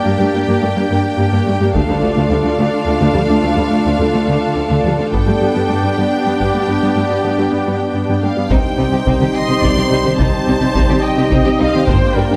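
Close, heavy-stick taiko drums enter at 1.7 seconds in this vast, brooding hybrid orchestral and electronic film cue at 71 BPM in 6/8 and C dorian, where a detuned sawtooth analog pad with chorus, a very quiet driving synth arpeggio, a focused, lush violin section on the second line, background violas and rich bowed cellos build up under scoring-stage reverb until, at 8.2 seconds, a smooth vibrato violin melody arrives, joined by mellow background French horns and a distant, very quiet double bass section.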